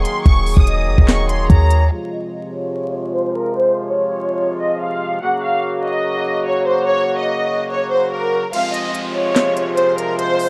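Menacing and eerie, this half-time trap hip hop excerpt at 145 BPM in F phrygian puts a rich, bowed violin section on the melody over reedy, vintage accordion chords, while an airy, distant flute line, a deep, boomy 808 bass and knocking trap drums with sharp snare and crisp hats sound only in the opening 1.9 seconds; a filter sweep then moves through the drumless middle, and at 8.5 seconds the drums return with the kick muted beside an electronic downlifter, framed by a dark, dry production dusted with vinyl crackle.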